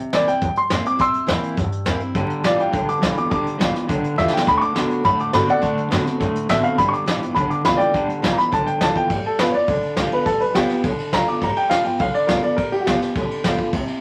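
Rockabilly in G mixolydian at a rollicking 207 BPM, this retro excerpt from a longer piece moves through C7, G7 and D7 over a full-bodied picked dreadnought acoustic guitar, thumpy gut-string pizzicato upright bass and a soft brushed kit with dark cymbals and a tight kick, which adds a fill at 4.2 seconds. An up-front, woody upright piano carries the melody. A twangy electric guitar at the edge of break-up plays a tremolo riff from 2.2 to 9.1 seconds, where the piano takes a solo. Moderate studio ambience and vinyl crackle give it an old-record feel.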